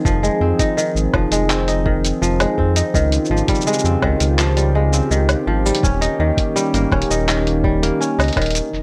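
Wistful and autumnal, this short folktronica clip at 83 BPM sets crisp, ringing fingerpicked kora arpeggios with digital delay over a smooth, detuned analog pad with chorus, a round, deep analog bass, a muffled, thumpy pitched-down electronic kick, and a tape-warm lo-fi sampler kit of handclaps, hi-hat, shaker and woodblock under low-pass filtering, all moving through Fm7, Dbmaj9#11 and Eb7 in a light reverb.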